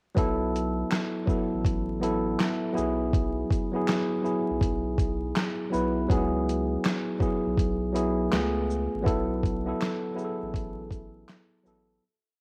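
A home cassette recording with vinyl crackle and a moderate spring reverb gives this short, complete lo-fi hip hop piece a hazy, melancholic air. At 81 BPM in 4/4 with swung sixteenths, a dusty soul sampler-style drum kit sits up front, its compressed, gritty hits carrying 12-bit sampler grit and cassette tape character. A thumpy kick, a medium-tuned snare layered with handclaps, quarter-note hi-hats and a shaker form a sparse beat. A tine electric piano, also up front and coloured by cassette tape, plays worn, slightly out-of-tune rhythmic chords in quartal voicings with grace notes, repeated like a sampled loop. Beneath it, a deep, thick saturated sub bass with a sine tone, fast attack and sustained notes plays a sparse line. The harmony moves from B5 through Eadd9/B, C#m7 and C#7b13 before returning to B5 as the track fades out from 9.1 to 12.0 seconds.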